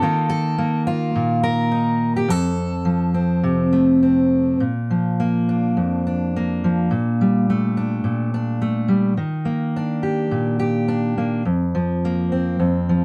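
Nostalgic and hopeful, this 13-second folk excerpt features a lone fingerpicked steel-string dreadnought guitar, full-bodied and up front, moving with a loose rubato feel through chords such as Ebsus2, Ebmaj7 and Fsus4, its dark production softened by a moderate studio reverb.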